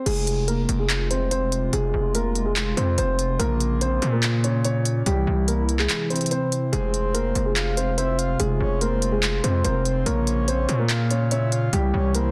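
Hip hop in a trap vein, this menacing, dark excerpt moves with a half-time feel over a cycle of F minor, B-flat minor and C chords. A dark, boxy concert grand piano carries the melody up front, its mellow tone trailed by tape echo, while a hollow, nasal pad holds soft chords in the background with a gentle chorus. Beneath them, a distorted 808-style bass hits hard with a fast attack and saturated, aggressive weight. The trap drum kit is crisp and overdriven, with hi-hats, handclaps and crash cymbal sitting up front, and the kick drops out briefly between 5.9 and 6.7 seconds. At 6.7 seconds a breathy, flute-like synth lead enters as a second line, adding vibrato, chorus and tape echo. Light digital ambience surrounds a dense, heavily limited modern master.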